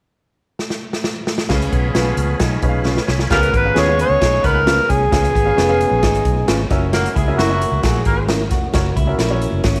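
A fill on the punchy, up-front, swinging big-band drum kit opens this uplifting, joyful slice of uptempo 1960s-style soul at 132 BPM at 0.6 s, then from 1.5 s over a Db7 chord a round, foam-muted vintage electric bass, woody upright piano, very quiet tonewheel organ with key click and rotary speaker, a twangy, lo-fi picked guitar riff through a small old amp and a distant, roomy horn section line join, dark, clean guitar stabs with warbly pitch drift add color, and a gritty, overdriven harmonica takes the jazz-style melody up front from 3.3 s with scooped notes and tongue slaps, all in a small room with light reverb.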